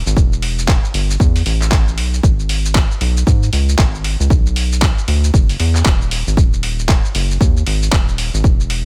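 A swung sixteenth-note groove in 4/4 drives this late-night, deep house fragment, anchored by a punchy, tape-warm electronic kick sitting up front. A rubbery, hollow square bass with a dark filter pluck bounces low beneath it, pumping through sidechain. A gritty, overdriven sampler-style kit adds handclaps, hi-hat and shaker with a small-room character, all set in a dry, close mix.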